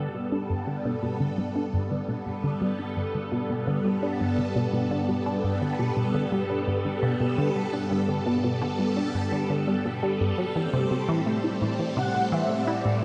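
A tight, driving sequenced sawtooth riff pulses at 85 BPM in straight 4/4 under a sweeping filter, anchoring this mysterious, hypnotic fragment of ambient space music, while a swirling, phased string machine holds bright, up-front Gadd9 chords that shift to Am7 at 10.6 seconds, a very quiet, breathy wind-like noise texture drifts in at 3.0 seconds, and a smooth, expressive synth lead with vibrato appears at 12.0 seconds, the riff and lead carrying tape-tinged delay inside a huge, dark reverb.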